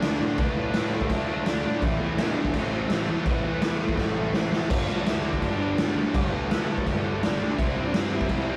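Angry and aggressive, this short cut from a longer punk rock piece charges along at 167 BPM in a straight 4/4, centered on A minor and moving through Dm, Am, G and C. A raw garage drum kit sits up front, its tight kick, medium-tuned snare and crash cymbal heard in a bright stone room with a rolled-off top, and a drum fill breaks in at 4.0 seconds. Beneath it, a fuzz-drenched picked electric bass growls low between G1 and A2, bright and overdriven. Three picked riffing guitars fill the background: a cranked stack guitar with extra overdrive and a dark biting overdriven guitar, both between G2 and D4, along with a double-tracked twin of the biting guitar that is barely audible. Over them, an overdriven semi-hollow guitar carries the melody from A3 to F5, its hollow-body tone dark and trailed by digital delay. The whole thing has the rough feel of a rehearsal-room recording, with light reverb and warm saturation.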